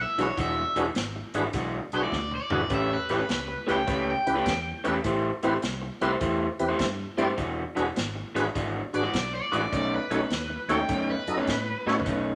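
A bright, overdriven lead guitar with spring reverb carries the melody in this gritty, rollicking electric blues shuffle, dropping out at 5.2 seconds and returning at 9.0. Beneath it, a slightly broken-up, lo-fi guitar through a small old amp plays a picked riff, while a full tonewheel organ with a slow rotary speaker, light overdrive and chorus vibrato fills out the accompaniment over ninth and minor seventh chords. A dark, round fingered bass anchors the low end, and an airy, polished big-band drum kit with a punchy kick swings throughout, including a fill at 2.1 seconds, all set in a moderate large studio reverb.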